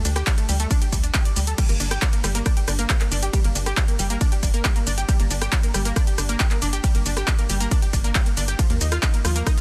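A straight 4/4 pulse at 137 BPM drives this soaring uplifting trance excerpt in G minor: an overdriven, punchy electronic kick sits up front from 0.3 s over an analog drum machine's crash, ride, hi-hat, shaker, handclaps and rim clicks, with sidechain pumping on its hats, percussion and cymbals, while a tight, dark sawtooth sequencer bass and a round, detuned, bright analog pluck, both pumping to the sidechain, carry the harmony through Dsus4, Gm and Ebsus2, the pluck's arpeggios thickened by ensemble chorus and tape echo in a dense, heavily limited, dry mix.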